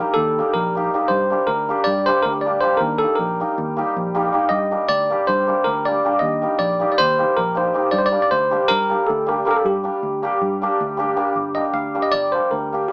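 A driving 9/8 pulse at 316 eighth-note beats per minute propels this restless, fiery Balkan wedding-band tune in G minor, tuned to A4 = 438 Hz, as the chords rock between Eb and Gm. A bell-like, up-front tine electric piano carries the melody over a shimmering hammered dulcimer accompaniment, while a round, foam-muted fingered electric bass enters at 0.2 seconds, sitting low in the mix. The electric piano takes a brief solo at 11.4 seconds, and the whole band sounds played live in one room, bathed in a wet studio reverb with a small-speaker character, in this cut from a longer piece.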